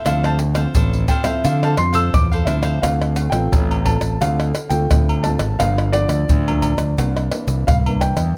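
Close, detailed microphones and a light reverb give this short cut from a longer samba and choro piece an intimate, present sound. At 87 BPM in 4/4 with a straight feel in D minor, the mood is lively yet bittersweet. A dark, mellow grand piano carries the melody high in its range, taking a solo over the opening 2.8 seconds. A bright, crisp picked cavaquinho accompanies only in that opening passage, while a thumb-plucked nylon-string guitar with fresh strings supports throughout. Up front, a growling fingered electric bass with overdrive sounds punchy and amped, alongside a tight, dry percussion section of egg shaker, surdo, pandeiro, tamborim and agogo bells played with hard hands. The harmony moves from Dm9 to Dm7, then to Gm7 and C9 as the second section unfolds.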